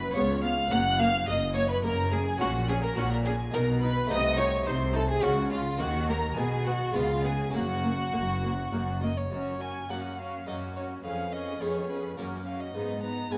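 A dark, reverberant recital-hall sound with lossy compression artefacts frames this dramatic, stormy baroque-style concerto movement in F# major at 106 BPM in 3/4, where an up-front, smooth solo violin carries the melody over a focused violin section, a background second-violin line, a viola section, a full Flemish-style harpsichord, and a bowed cello section, with the double bass section dropping out at 9.2 seconds as a new passage begins at 9.3 seconds.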